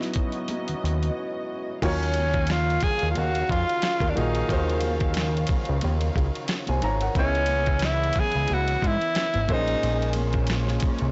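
A present baby grand piano bathed in plate reverb, veiled con sordino strings in the background and a lightly swung, gritty sampler-style drum kit with a thumpy kick set an introspective, sultry neo-soul groove from the start. They are soon joined by very quiet, bright congas, a fat, detuned analog bass with transformer saturation and, from 1.8 seconds, a breathy, whispered tenor saxophone melody with vibrato, scooped notes and slapback echo, all heard through a blown-out, overdriven, dull-topped recording.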